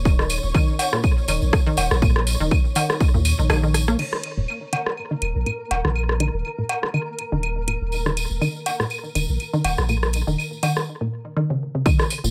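A lightly reverberant, cool and sparse slice of minimal techno, cut from a longer piece, rides a gently swung 4/4 groove. A deep, up-front sine sub bass with a punchy, pitch-drop attack and tube saturation pumps against the sidechain. Above it, a juicy, squelchy blip pluck built from detuned pulse and sawtooth waves carries the riff with chorus and delay, while a grainy, flickering granular texture hangs mellow and sustained in its own reverb. The layered, tape-warm electronic kick hits hard at first, stops at 3.1 seconds ahead of a band accent and drum fill, and returns only at 11.9 seconds. Meanwhile a house kit with metallic hats, crash and rim clicks keeps time, small-room electronic claves, rim click and cowbell tick through digital delay, and a jingly acoustic tambourine comes and goes. A filter sweep moves over the synth arpeggio through the longer middle stretch before a break at 10.9 seconds.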